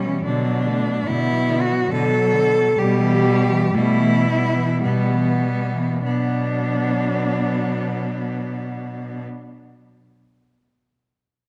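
A melancholic, elegiac classical piece for cello ensemble in B minor, cut from a longer work, moves in a rubato 3/4 at 48-74 BPM, slowing through its first 6.0 seconds over Bm and Em/B harmonies before returning to Bm. Up front, a focused, bowed solo cello sings the melody with vibrato above a close, even bass cello holding a low B. In the background, a more distant cello traces an expressive second line with portamento, while another supplies a smooth, steady accompaniment. A dark production and a concert hall reverb with a 1.9-second decay give the ensemble a rich, enveloping bloom.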